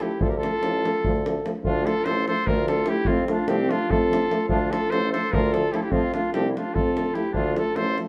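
Fiery and restless, this Balkan brass band excerpt drives along at 295 BPM in 7/8, counted in eighths, in D minor, moving between D minor and F major. A warm, present cornet carries the melody up front over a bright clarinet's second line, while a clear euphonium and trombone sit in the background as accompaniment, a deep davul provides the percussion, and a clear tuba with light vibrato and a vintage tone enters at 0.2 seconds on the bass. The band plays live together in one large studio room, bathed in a wet reverb.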